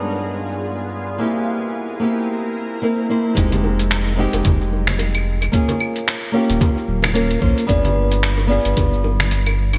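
A fingerpicked nylon-string guitar opens this smooth, relaxed sunset chillout excerpt. It sits small and up front with a touch of delay, while a shimmering, ethereal pad holds sustained chords behind it, its slow attack dressed in chorus, phaser and an octave-up shimmer. In F minor at 111 BPM with a swung 16th-note feel, the opening moves through G7b9 and C7 before the pad drops away at 3.4 seconds and the groove arrives on Fm7. A round, deep sine sub bass joins up front there, alongside a gritty, tape-warm sampler-style kit of hi-hat, finger snaps, claves and cabasa, filtered and wrapped in gated reverb, with a thumpy electronic kick that stops at 8.9 seconds. Soft-handed bongos and congas ring in the background as the chords shift to Eb7sus4 and back to G7b9, and a lush hall reverb with bright 1980s-style digital production ties the mix together.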